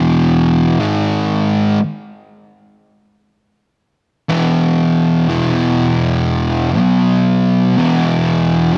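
A lone fuzz guitar opens this brooding metal fragment, cut from a longer piece, and carries it alone across its full 8.8 seconds. The tempo is a slow 60 BPM in straight 4/4, with the instrument tuned to A4 = 442 Hz, giving the passage a heavy, hypnotic weight. The electric guitar is picked and thickly distorted, its fuzzy, compressed tone double-tracked and placed up front, moving between E2 and B3. The harmony rests on E5, shifts to G#5 at 0.8 seconds, returns to E5, reaches B5 at 6.8 seconds, and settles back on E5 at 7.8 seconds. The mix is dark and dry, with little reverb, keeping the guitar close and heavy.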